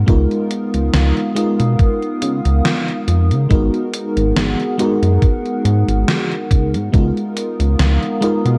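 A light reverb wraps this short, woozy vaporwave excerpt, with a dusty cassette quality clinging to the electric piano. Up front, an FM electric piano with a soft pad layer carries the accompaniment in lush, dreamy, full-bodied tones, shimmering with tremolo, analog chorus and analog delay as it moves from C#13 to G#m9 and back to C#13. Beneath it, a glossy, dark chorused synth bass mixes pulse and sawtooth colours with a plucky filter attack, while a warbling, nostalgic tape-like pad sits further back, holding mellow sustained chords through chorus, phaser and its own reverb. The drums arrive at 0.1 seconds: a thumpy, up-front electronic kick that drops out at 7.1 seconds, and a gated 80s digital drum machine whose hi-hat and overdriven snare ring with gated reverb. The mood is melancholic and woozy, with a gentle swing easing the slow groove.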